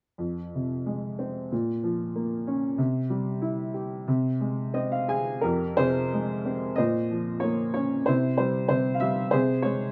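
Unevenly pulsed and rubato in four, this brooding fragment of lyrical classical solo piano features a woody, boxy upright set up front in a moderate studio reverb, spanning F2 to Ab5 over moody minor harmonies that turn to richer added-tone colours after a brief fill at 4.4 seconds.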